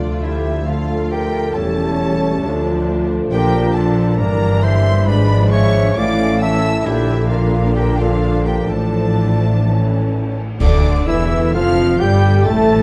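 Classical excerpt from a dramatic, stormy romantic movement for symphony orchestra, taken with a pliant rubato feel, where a rich, smooth violin section carries the high melody over a lush second violin line, a clear clarinet and an airy concert flute. Beneath them a distant viola section supplies accompaniment, mellow French horns and very quiet trombones hold sustained chords, a ringing harp plays arpeggios, and bowed cellos and a close double bass section anchor the bass. Dark cymbals, a cymbal swell and concert bass drum enter at 6.9 s, and a smooth-topped trumpet adds stabs from 10.6 s, where the whole band accents the arrival of a new section, all set in a reverberant recital hall with a dark production.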